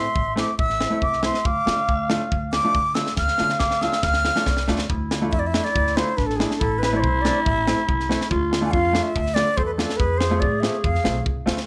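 A straight 4/4 pulse at 140 BPM pushes steadily faster across this festive, soulful klezmer excerpt, set in D dorian with a raised fourth and tuned slightly low to A4 = 436 Hz. A breathy silver concert flute carries the melody with vibrato and a soft attack, taking a solo through the opening stretch until 4.9 seconds, its unsteady tone lifted by plate reverb. Beneath it, a growling clarinet plays a raspy, jazz-style second line full of scooped notes. A clear upright piano supplies intimate, woody accompaniment with audible action noise, while the pizzicato upright bass adds a thumpy foundation over chords moving from Am to Dm and finally F. The crisp fusion drum kit comes in at 0.2 seconds with a tight kick and high-tuned snare up front, and plays a fill from 3.2 seconds leading into the second part, all within a moderate studio room.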